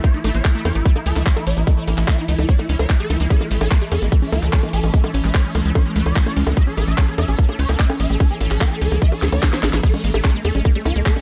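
A driving pulse at 147 BPM anchors this intense psychedelic trance excerpt in A major, with a tight, up-front electronic kick carrying the most weight and a tube-saturated sequencer bass of sawtooth and square tones entering at 0.2 s to push hard beneath it. The garage drum kit fills in with a cracking snare, handclaps, hi-hat, ride, crash and bongos, all set in studio reverb, and a drum fill at 9.2 s leads into a fresh pass of the drop at 9.8 s. On top, a swarming, aggressive rave lead built from detuned pulse and sawtooth voices with a sub octave and a pitch-rise attack carries the melody, treated with chorus, phaser, delay and sidechain pumping. A lush unison pluck with a moving notch and a noise layer plays a riff through digital delay, while a morphing wavetable pad of triangle and sine tones sustains chords in the background with chorus and its own reverb. Both of those parts, along with the lead, breathe with the sidechain pumping, and a digital ambience surrounds the whole mix.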